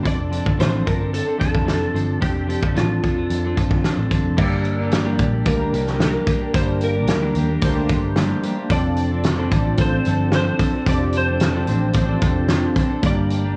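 Hazy and lonely, this indie and bedroom-pop excerpt moves at 111 BPM in G minor with a straight 4/4 feel: a bright, twangy clean electric guitar carries a warbly pitch drift and subtle chorus, while a dark, slide-played lap steel sings the melody through ensemble chorus and tape echo. Beneath them sit a round, foam-muted picked bass and an up-front, gritty drum kit with a fat snare and punchy kick. At 4.4 s, glossy, detuned retro synth keys with a filter sweep and cassette tape colour enter in the background, and the whole track sits in a small room with studio ambience and cassette tape character as the chords shift between Dm7/F and Gm.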